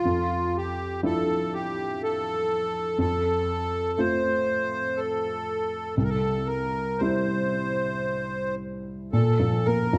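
Celtic slow air in C mixolydian, tender and nostalgic, drifting in rubato 3/4 at around 56-62 BPM, where a reedy, sweet accordion with light tremolo tuning carries the melody up front over an intimate felt-muted upright piano whose mellow, short-sustained accompaniment keeps its action noise audible, all set in a dark production with a moderate recital-hall reverb as the chords move from Dmadd9/F through F and C to Bb5 at 9.1 seconds in this brief excerpt from a longer piece.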